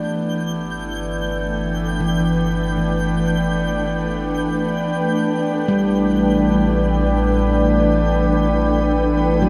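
Serene and peaceful, this ambient excerpt drifts in free time, tuned to A4 = 444 Hz. A glassy, ethereal FM pad sits up front with sustained chords moving from Em7/G to A5 at 5.1 seconds, while a ringing steel handpan plays delayed arpeggios in the background, a reedy pedal harmonium holds a breathing drone, and a twinkling granular texture fades in high above. A deep, ominous rumbling drone enters at 0.6 seconds to anchor the bass, and the whole dreamy mix is soaked in plate reverb.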